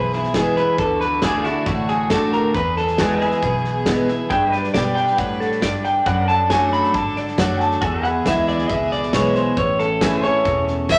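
An electric guitar through a small old amp opens this nostalgic, sunny honky-tonk and classic country excerpt with a bright, twangy, slightly broken-up solo up front, over a full-bodied, fresh-stringed dreadnought acoustic guitar and a clean pedal steel played with fingerpicks and volume swells. A natural country drum kit enters at 0.1 seconds with a punchy kick and medium-tuned snare in a small room, while a dark, round, foam-muted vintage electric bass holds the low end and a rich, earthy chamber string section sits in the background, all under a wet large studio reverb. A clear, focused fiddle arrives up front at 10.9 seconds with light vibrato just as the piece is cut off.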